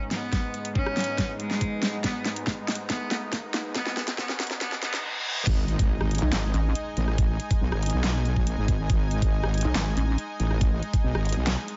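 A bright, biting cello carries the melody from the very start, its vibrato-laden bowing trailed by dub echo, while a lush supersaw pad sustains chords beneath it through a low-pass filter and sidechain pumping. This heavy wobble dubstep cut, in G# phrygian at 140 BPM with a half-time feel, opens as a menacing build-up over a G# minor chord, with the pad's filter sweeping and a drum fill from the dubstep kit running under the cello. A very quiet riser and reverse cymbal lead into the drop at 5.5 seconds, where a faint impact lands and the harmony settles onto a G#5 power chord. There a heavy, detuned wobble bass enters, saturated and chorused, alongside brief bursts of a pulsing pluck wobble bass sitting slightly louder still. The overdriven drums stay up front throughout, pairing a knocking electronic kick with a huge snare, handclaps, hi-hat, rim clicks and crash cymbal, all bathed in a digital ambience as the drop unfolds, menacing and chaotic.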